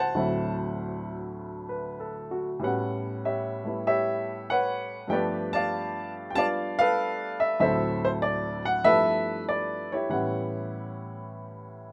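A warm, open baby grand piano sits up front in this solo jazz passage, cut from a longer piece and moving at 96 BPM in 4/4 with a swung eighth-note feel. The sophisticated harmony travels through rich extended chords, from D13 to A13, G9 and D9, then G13, and back to A13 at 10.1 seconds. The piano spans its low register to its upper middle, set in a light reverb.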